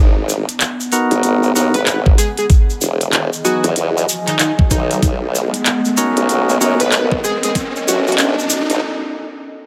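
Swung sixteenths drive this playful, gritty glitch hop build-up, cut from a longer piece, where a wobbling, formant-swept sawtooth bass with chorus and an electronic riser run from the start beneath a nostalgic, lo-fi tape-like pad that warbles and pumps with the sidechain. A grainy acoustic tube shaker and a glitchy kit of clicky hats, handclaps and rim clicks join almost at once, then a lightly overdriven tonewheel organ punches out stabs with key click and delay, and a catchy, detuned unison lead with a filter pluck and cassette tape colour carries the melody from 1.7 seconds. A knocking, layered electronic kick arrives up front at 2.1 seconds, and the chords move from G#m7 through Emaj7 and Bmaj7 to A before a brief break at 8.8 seconds, all set in a light reverb.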